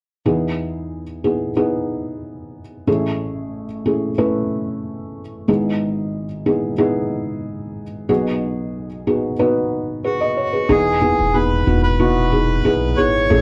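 In a straight, unhurried 4/4, this uplifting pop excerpt opens at 0.3 s with a felt-muted upright piano playing soft, mellow chords that move through Emaj7, Amaj7, Emaj7/G# and B6, close and intimate with audible action noise and short sustain. A reedy, airy accordion melody enters at 10.1 s, and a woody, thumpy pizzicato upright bass joins at 10.7 s as the harmony returns to Emaj7. The whole recording sits in a moderate studio reverb with the worn, warbly pitch drift of old cassette tape, which gives this cut from a longer piece a warm glow.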